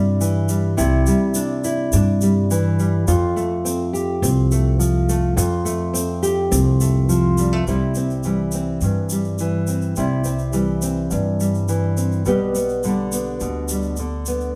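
A fingerpicked nylon-string guitar with a dark, classical tone sits up front from the opening, joined at once by a woody, thumpy pizzicato upright bass, and at 0.2 seconds by a grainy, close tube shaker. This nostalgic acoustic folk excerpt moves at a straight 105 BPM in C major, with finger squeaks audible on the guitar as the chords pass from Cadd9 to F and, in the second section from 7.7 seconds, from C to G/B. The trio sounds as if playing live in one room, with a moderate large-studio reverb lending space to the recording while the shaker stays close and dry.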